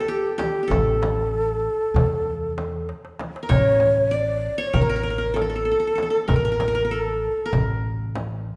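A wet recital-hall reverb surrounds this hypnotic, longing Turkish makam ensemble passage, cut from a longer piece and moving in 9/8 at 193 BPM counted in eighths. A breathy, close-miked ney carries the melody up front with vibrato and tongued notes, while a bright, plectrum-plucked qanun plays a second line in the same register and a woody pizzicato upright bass joins underneath. A crisp metal-shell darbuka sits dry in the background beside a deep, large frame drum, and a drum fill from 2.9 to 3.5 s leads into a new section.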